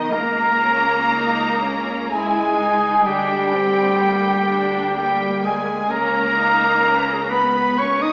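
Classical orchestral music, elegiac and melancholic, moving slowly at 63 BPM in 3/4 with a rubato feel, cut from a longer piece. A distant, bowed violin section carries the melody in the background, while a second violin section, a hollow silver concert flute with pure vibrato, and a clarinet placed up front weave second lines. Beneath them sit close, lush violas, a smooth horn section holding sustained chords, and cellos and double basses on the bass, the harmony moving from C#m69 to A#7/D and then D#5/C#, all in a wet scoring-stage reverb heard from further back in the room with a small-speaker sound.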